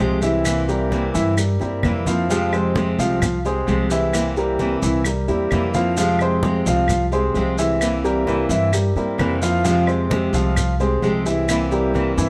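Nostalgic and sultry, this excerpt from a longer Cuban son and guajira piece moves in a straight 4/4 over an alternation of C7 and Fmadd9 chords. Up front, a warm, fingerpicked steel-string acoustic guitar with an auditorium body carries the accompaniment, joined by a concert grand piano whose mellow, natural arpeggios have deep bass and long sustain. Beneath them, a pizzicato upright bass on steel strings gives a woody, shadowy low end. The Latin percussion adds texture: very quiet, low-tuned congas with a thick, damped skin struck by hard hands, grainy, band-limited maracas with a vintage character, and close, dry claves in the background that enter at 0.5 s and stop at 11.7 s. Light reverb lends the ensemble a gentle sense of space.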